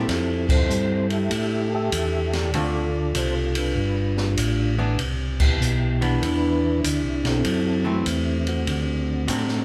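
A soft, flute-like tonewheel organ carries the melody from the first moment, its percussive attack colored by chorus vibrato and a slowly turning rotary speaker, while a dark, compressed hollow-body archtop guitar accompanies at a lower level and a second, smooth organ voice with audible key click plays the bass line up front. The open acoustic drum kit joins at 0.1 seconds with dark cymbals, a high-tuned snare and a boomy kick, and the band lands together on accents at 0.4 and 5.3 seconds over lush jazz chords. This greasy, soulful stretch of swinging organ-trio soul jazz, cut from a longer performance, sounds like a band playing live in one room with light reverb.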